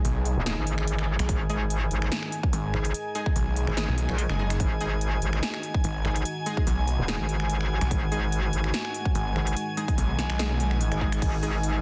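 A snarling, detuned saw bass growls up front beside a metallic, chorused wobble bass in this chaotic, menacing heavy wobble dubstep excerpt in G# minor at 145 BPM with a half-time, lightly swung feel, driven by a punchy electronic kick from 1.3 seconds and a big-room dance kit of crisp hats, snare, snaps and crash, while a dark, morphing wavetable pad and an airy, breathy pad pump alongside a gritty 12-bit orchestra-hit-like stab with delay behind a dense, heavily limited master.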